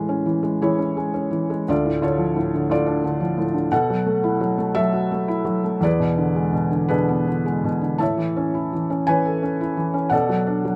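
In 6/8 at 55-60 BPM with free rubato, this peaceful, tender fragment of a classical piece in A major is carried by a lone felt-muted upright piano, heard throughout its 10.8 seconds. Up front and intimate under close, detailed microphones with light reverb, the piano has a soft, mellow tone through thin felt, with audible action noise and a natural character, ranging from D2 to A5. The harmony drifts from Amaj7 through Dm, B7sus4 and E7 to Aadd9, reaching Bm7 as the fragment breaks off.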